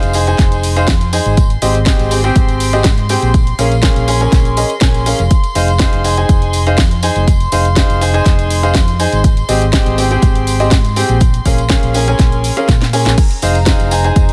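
Piano house at 122 BPM in F minor, bittersweet and soulful, cut from a longer piece. A clear, woody upright piano riff sits up front with delay and sidechain pumping over a round, hollow-body electric bass, while dark, floating bowed strings hold sustained chords in the background, moving through Fm7, Abmaj7 and Bbm7. A punchy, overdriven electronic kick enters up front at 0.4 seconds alongside an overdriven house kit with a cracking snare and bright hats, a distant tambourine adds texture, and a drum fill at 12.7 seconds leads back to Fm7.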